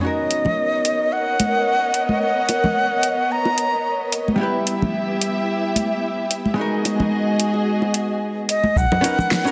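A dense, heavily limited modern master with moderate stage reverb carries this sunny sunset chillout excerpt at 110 BPM in B major, swung on 16ths, where a breathy, bright concert flute with delay sings the melody up front until 4.1 s and returns at 8.5 s over clean, hollow-body jazz guitar accompaniment with delay, lush, woody bowed strings through a low-pass filter, a fat-snared deep house kit with metallic hats, cabasa and congas, soft-handed, dry congas and bongos, and, at 8.8 s, a brief round analog bass note joined by an electronic kick sitting in the background.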